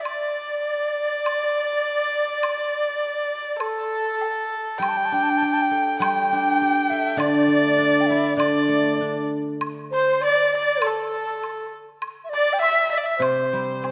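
In a flexible, rubato 2/4 pulse around 100 BPM, this graceful, pastoral piece of Chinese traditional chamber music unfolds in the D shang mode, cut from a longer work. A single bowed erhu carries the melody up front, its clear, nasal and slightly biting tone shaded with light vibrato and sliding portamento that give it an earthy voice. Alongside it a large bamboo dizi plays a second line, its airy, reedy sound brightened by the buzzing membrane, soft attacks and gentle vibrato. A close, dry woodblock keeps quiet time in the background throughout. The guzheng enters at 4.8 seconds with ringing, silvery fingerpicked accompaniment. It drops away at 10.2 seconds, shortly after the music moves into a second section at 9.6 seconds, and returns at 13.2 seconds. A moderate concert-hall reverb lends the ensemble an open, natural space.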